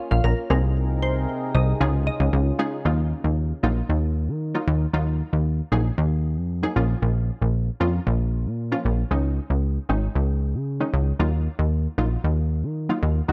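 A sweeping, resonant pad with chorus and phaser opens this energetic, bittersweet pop excerpt in Eb minor at 115 BPM, joined almost at once by a glassy, crystalline wavetable pluck melody through chorus and digital delay and a funky, up-front analog bass, with punchy detuned chord stabs entering at 0.5 s and carrying on beside the bass once the pad and pluck fall away by 2.8 s, set in a dark production with digital ambience.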